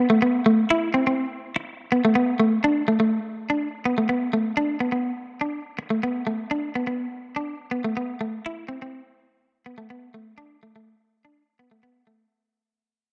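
A dry, close studio sound in a 1970s style, with a light touch of room reverb, frames this short carefree highlife passage cut from a longer piece. A lone clean electric guitar carries everything, bright, twangy and picked up front between A3 and E4, with a spring reverb on its tone, moving at 124 BPM in a straight 4/4. The guitar begins to fade out at 1.5 seconds and continues receding until the clip ends at 12.3 seconds.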